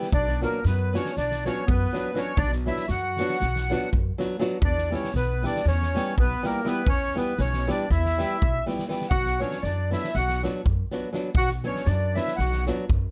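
Bittersweet and restless, this Balkan wedding-band excerpt in 9/8 at 241 BPM (eighths) moves from Bm to Em and back to Bm, with a reedy, sweet accordion carrying the melody in its light tremolo tuning over a bright, close-miked clarinet second line, dark fingerpicked flamenco guitar accompaniment, a thumpy, woody pizzicato upright bass with gut strings, and a loose indie drum kit whose fat snare and punchy kick pump in a studio room, all under light reverb.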